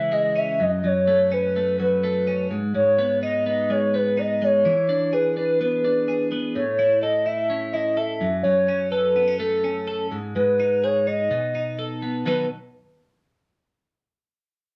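Set in a moderate club reverb, this breezy, youthful indie pop fragment in B mixolydian moves at 126 BPM in a straight 4/4, with a hollow, woody synth lead with vibrato carrying the melody through chorus and slapback echo, while a bright, twangy twelve-string electric guitar plays clean arpeggios alongside it, both parts up front and both stopping at 12.5 s, just after the harmony arrives on B.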